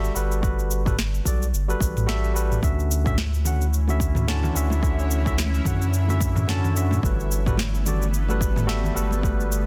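A lightly swung 4/4 groove at 109 BPM drives this smooth, blissful sunset chillout excerpt, built on an electronic R&B drum kit with a sharp snare, cabasa and toms in a small room, layered with a deep, overdriven electronic kick that enters at 0.4 seconds. A round sine sub bass sits up front, sustaining low notes. A bright, barky tine electric piano carries the accompaniment with a clean, direct tone and a digital delay, moving through Gmaj9 and Dmaj9 before returning to Gmaj9. High-tuned, ringing acoustic congas with a vintage, band-limited character join in the background at 3.2 seconds. An ethereal pad arrives at 3.6 seconds, its slow attack, octave-up shimmer and granular texture treated with chorus, phaser and reverb. The mix has light reverb and a dense, heavily limited modern master.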